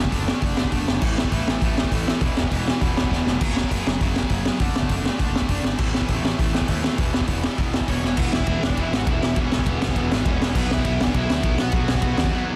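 A dry, dense and heavily limited mix opens this urgent, raw punk rock fragment, cut from a longer piece and driving at 201 BPM in a straight 4/4. A bright, double-tracked distorted electric guitar hammers out the riff from the first second, moving through D/F#, A5, E5 and F#5 power-chord territory. Beneath it, a growly fuzz picked bass sits back in the mix, while the raw garage drum kit stands up front with a punchy kick, a high-tuned snare, gritty saturation and a rolled-off top, using crash and ride cymbals and playing fills at 3.1 and 8.0 seconds. At 7.9 seconds a crunchy overdriven guitar enters with a picked melody, and the music later shifts toward Bm and B5, before the band hits a break at 12.3 seconds.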